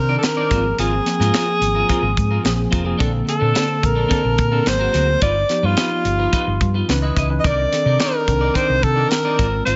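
A breathy alto saxophone opens this short cut from a longer piece, carrying the melody between F4 and Eb5 over a mellow tine electric piano bathed in lush chorus, in a polished 1980s jazz-funk pop groove at 108 BPM in a straight 4/4. The sax sits up front, close-miked and intimate, with a soft attack, subtone, vibrato and scooped notes that give it a whispered jazz character. A hollow-body short-scale electric bass, fingered, round and punchy with a dark amped tone, anchors the low end, while a clean, picked electric guitar with analog chorus enters at 0.1 seconds with a riff. A tight funk drum kit joins at 0.2 seconds, dry and airy with a high-tuned snare, tight kick and hi-hat placed up front. The harmony glides through lush extended chords such as Ab69, Bbmaj9, G7b13 and Cm9, and light studio reverb keeps the breezy, upbeat mood smooth and softly rounded at the top.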